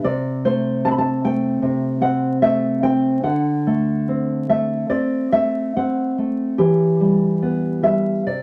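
Nostalgic and tender, this brief romantic excerpt for solo classical guitar drifts in a loose, rubato 4/4 as a dark, thumb-plucked nylon-string guitar sits up front, moving from Am/C through D7 to Em over 8.4 seconds in a moderate studio reverb touched with vinyl crackle.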